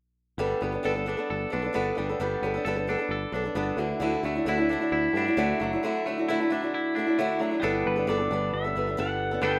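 A boxy old ladder-braced acoustic guitar, picked up front with plate reverb, carries this hopeful, open-road folk rock and heartland rock passage at 132 BPM, moving from Gadd9 to Dadd9 and back in a straight 4/4. A twangy, compressed electric guitar, also up front, plays a riff over a growly picked electric bass, all in a rough home demo mix with moderate studio reverb. At 7.9 seconds a bright pedal steel guitar enters with the melody, played with fingerpicks and slide, adding volume swells and plate reverb before this short cut from a longer piece ends.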